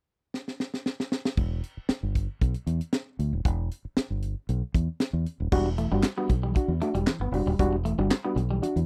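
Driving and hypnotic, this funk excerpt in E minor moves at 116 BPM in a straight 4/4, opening with a drum fill at 0.3 seconds on a tight, up-front acoustic kit with a high-tuned snare, tight kick, hi-hat, handclaps and crash cymbal. A foam-muted fingered electric bass enters at 1.4 seconds as the harmony settles on Em. At 5.5 seconds a reedy electric piano adds stabs over Em7, and at 5.7 seconds a compressed, twangy clean electric guitar joins with a picked riff. The sound is dry and close, like a 1970s studio recording with little reverb.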